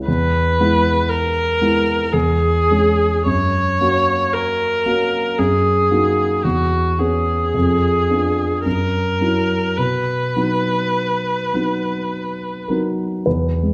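A dark, mellow concert grand piano opens this serene, lyrical romantic duo, its deep bass supporting a rich, smooth viola that enters at 0.1 seconds with a vibrato melody. Taken from a longer piece in B major, the passage moves in a slow, rubato 3/4 at 51-58 BPM, its harmony passing through F#7 before settling on B. Both instruments sit up front within a lush recital hall reverb; the viola falls silent at 12.7 seconds, and the piano continues until 13.7 seconds.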